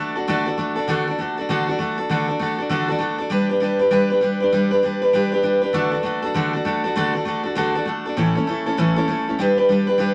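Under a light reverb and a vinyl crackle, a brief, rowdy and upbeat rock excerpt features a single full-bodied jumbo steel-string acoustic guitar, picked and sitting up front, playing alone with a swung eighth-note feel as it moves through D, G and A chords.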